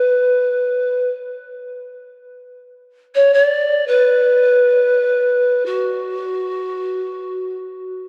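Haunting and spacious, this meditative world-music excerpt unfolds in free time in B minor, carried by a lone bamboo pan flute with a breathy, chiffy straight tone. The flute plays alone from 0.0 to 7.6 seconds, ranging from F#4 to D5, its tongued notes set in tape echo and sounding both up front and distant. A wet cathedral reverb lasting 5.1 seconds and a dark production surround the sound.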